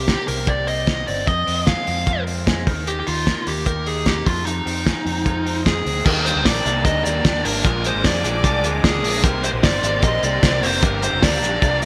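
Bright and youthful, this jangly indie pop excerpt moves at 151 BPM in a straight 4/4, set in E-flat major under a glossy 1980s-style digital sheen and a lush hall reverb. An up-front, overdriven lead guitar carries the melody with a dark, smooth, picked tone, while a second electric guitar, lo-fi and slightly broken-up through a small old amp, plays fingered arpeggios in the background with a subtle chorus. A round, punchy fingered bass anchors the low end, and a cloth-damped drum kit thuds up front with a fat snare, tight kick, muffled cymbals and a gritty, saturated character, all wrapped in gated reverb. At 6.0 seconds two new parts join: a raw, overdriven garage guitar playing picked accompaniment with ensemble chorus, and a studio string section holding sustained, bowed chords with vibrato. Moments later the harmony shifts from minor-seventh colours toward an Ebmaj7 and Bb7 passage. 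These additions sit back in the mix, thickening the texture while the lead guitar stays out front until the cut.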